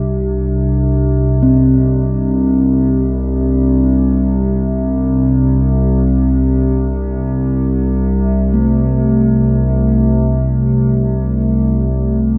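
A warbling, nostalgic, dark, lo-fi tape-like pad drones up front between C2 and C3 with chorus and its own reverb, while a pure quartz singing bowl struck with a suede striker rings between A3 and D4 with slow beating, the two sounding together throughout this calm, spacious, free-time world meditation fragment of 12.4 seconds, cut from a longer piece and soaked in a lush hall reverb that gives the mix its dreamy haze.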